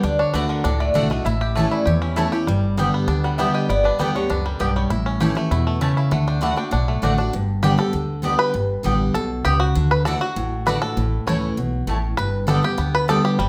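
A straight 4/4 pulse at a brisk 198 BPM drives this joyful, lively bluegrass excerpt, with a full-bodied, up-front picked acoustic guitar and a thumpy, dark upright bass anchoring a D, A and G progression while a mellow, woody mandolin adds stabs. Twangy fingerpicked banjo with plate reverb and a nasal, metallic slide lap resonator guitar share the melody until the resonator stops at 7.2 seconds. From 7.3 seconds the percussive five-string banjo takes a solo in a moderate large-studio room.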